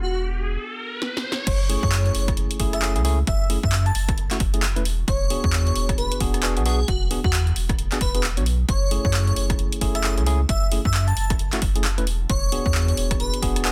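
A saturated, thick sub bass anchors this moody, skippy two-step UK garage cut at 133 BPM in F# minor, where an airy, detuned lead with chorus and tape echo floats over bright tine electric piano stabs, an electronic riser gives way at 1.5 seconds to a drop driven by an overdriven electronic kick and a punchy analog drum machine of snare, handclaps, hi-hat, rim click and crash, all in a dense, heavily limited mix moving between E9 and F#m7.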